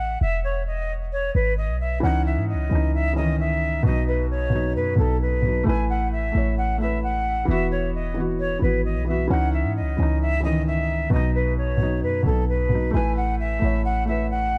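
A menacing, brooding trap excerpt opens with an airy concert flute, its straight tone and crisp attack carried on a delay, sitting over a deep, boomy 808-style bass with a sine core, a noise layer and a fast attack that decays into darkness. At 2.0 seconds a felt-muted upright piano joins with soft, mellow, intimate chords, its short sustain and audible action noise giving the accompaniment a close, muffled texture. The track moves at 132 BPM in 4/4 with a half-time feel, set in C# minor, and the harmony moves from an opening E5 through C#madd9, B, Asus2 and Esus2, then returns to C#madd9, B and Asus2, suspended colours that keep the mood unresolved. The bass sits a touch louder than the piano and the flute, so the low end anchors the piece. A small room ambience and a dark, warm production wrap the parts together in a shadowy, hushed space.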